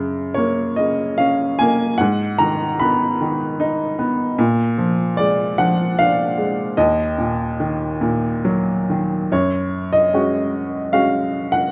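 A clear, woody upright piano sits up front with audible action noise and an intimate, natural tone, playing a melancholic, dark classical solo in Eb minor at 75 BPM in a rubato 3/4, its lyrical line ranging from Eb2 to Cb6 in a moderate studio reverb as the harmony moves from Gb through Abm and Bb7 to Ebm before shifting at 9.3 s to F#sus2 as this fragment of a longer piece breaks off.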